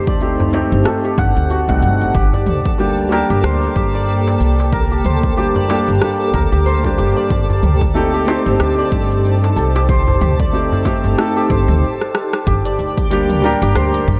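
A felt-muted upright piano with audible action noise, a shimmering hammered santur, a woody pizzicato upright bass and an ethereal, chorused pad in the background open this earthy, meditative organic downtempo excerpt at 93 BPM with a swung sixteenth feel. An overdriven deep house kit with metallic hats and a punchy, layered electronic kick join almost at once, along with a crisp, deep darbuka in the background until 11.6 s, and a sparkling granular texture enters from 2.5 s. A brief break and drum fill then lead into a new section at 12.5 s, all within a dark, warm production.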